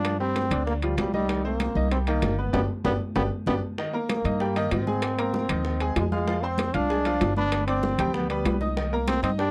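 Driving at 193 BPM in 4/4, this danceable salsa in C minor puts a punchy, vibrato-laden trombone up front on the melody over a brilliant, slightly detuned upright piano with audible action noise, a woody, thumpy pizzicato upright bass, ringing metal-shelled timbales, and high-tuned congas and bongos set back in the background, with a drum fill and band accent from 2.5 to 3.8 seconds in a dry, close 1970s-style studio sound cut from a longer piece.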